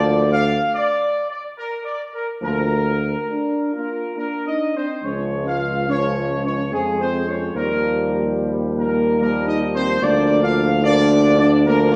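A classical ceremonial fanfare in a stately triple metre, this solemn and majestic brass piece is cut from a longer work and runs just 12 seconds. A dark trumpet section carries the melody up front with a soft attack, its tight ensemble sound placed at a distance. Beneath it, a mellow French horn section holds sustained chords in the background with a light vibrato, joined by a trombone section whose tight, warm tone fills the middle of the harmony. A solo tuba anchors the bass up front, its tone touched by light vibrato. The harmony moves from Bb/D through Db and Ebadd9 before returning to Bb/D at 10.0 seconds, while a wet stone room reverb with a 1.4-second decay lends every section a roomy, distant quality within a dark production.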